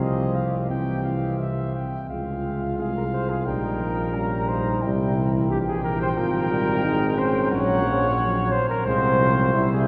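Rubato 4/4 at 88 BPM, this solemn, heroic brass quintet passage in F minor, cut from a longer piece, sets a mellow cornet melody with vibrato above a vintage-toned flugelhorn second line up front, while a clear, punchy French horn and a distant, roomy trombone accompany in the background and a smooth-topped bass trombone anchors the bass up front, all bathed in a cathedral reverb that places the ensemble further back in the room.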